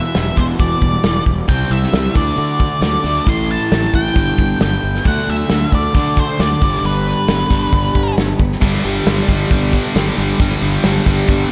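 A dark, fuzzed octave lead guitar with slapback echo carries the melody of this angsty, brooding quiet-loud alternative rock excerpt until 8.1 seconds, over an overdriven semi-hollow guitar riff, a bright steel-string acoustic picking arpeggios with audible finger squeak in the background, a growly fuzz-driven fingered bass, and an up-front loose indie drum kit with a tight kick and rolled-off top, before a scooped, high-gain guitar riff enters at 8.6 seconds, all set in a lush hall reverb that gives a big arena sound.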